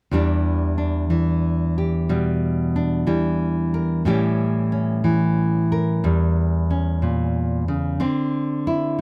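Swung eighth notes at a slow 61 BPM in 4/4 carry this brief fragment of warm solo jazz, where a fingerpicked nylon-string guitar with a full-bodied, deep classical tone sits up front in light reverb and close, detailed miking, moving from Em7 to A7 at 4.1 seconds and settling on D7sus2 at 8.0 seconds.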